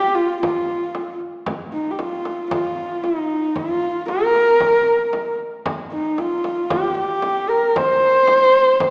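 A straight 4/4 pulse at 114 BPM carries this short passage of Mongolian folk music, cut from a longer traditional piece and lasting under nine seconds. The mood is vast and windswept. A single horsehead fiddle carries the melody from the first moment, bowed on horsehair strings between Eb4 and C5, its husky, woody tone placed close and up front, with vibrato and portamento. A deep, large frame drum joins at 0.4 seconds, played with soft hands; it sounds close and dry and sits well beneath the fiddle in level. The recording carries the wet reverb of a recital hall and a small-speaker character.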